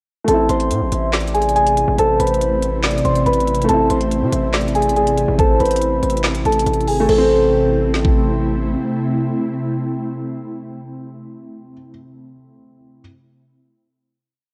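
Trap-style hip hop at 141 BPM in a half-time feel, menacing and eerie in A harmonic minor, built on a looping melody of muted, warbling felt-like synth keys doubled in octaves, a hollow, woody clarinet-like lead tracing a sparse counter-melody in the background, and a dark, boxy baby grand piano holding close-voiced chords with audible action noise. Underneath, a distorted, saturated 808-style bass slides between long sub-bass notes while a trap kit knocks out a half-time beat with woody snare layered with clap, crisp hats in fast rolls and a crash cymbal, all dropping out near 8.1 to 8.8 seconds. An ethereal, detuned pad swells in at 1.3 seconds and carries the closing A minor chord with the piano, fading out by 11.3 seconds while the piano rings on until 13.0 seconds, the whole piece wrapped in cassette tape grit and light digital ambience.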